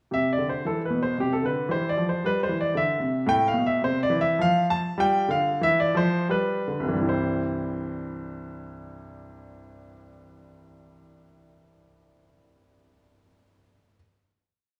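In a flexible, rubato triple metre that drifts between 75 and 115 BPM and slows from 2.5 to 7.1 seconds, this radiant, flowing baroque-style suite movement in C major features a clear, polished baby grand piano playing solo and up front across a range from C2 to A5, its single-line melody set in counterpoint against an independent bass line, moving through C, C/E, A minor, a brief unharmonised moment and G before settling on a final C chord at 7.1 seconds, all bathed in moderate recital hall reverb with a touch of small room ambience.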